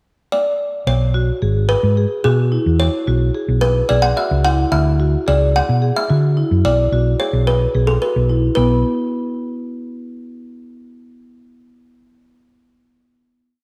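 A small room with a moderate echo-chamber reverb frames this driving, intricate progressive instrumental in 7/8, where an up-front kalimba with a woody, thumbnail-plucked tone opens at 0.3 s with arching, motif-based phrases, a dark, round, hollow-body fingered electric bass enters at 0.9 s with a syncopated riff, and a marimba played with medium mallets adds a warm arpeggiated ostinato from 1.1 s before the piece closes on a final note.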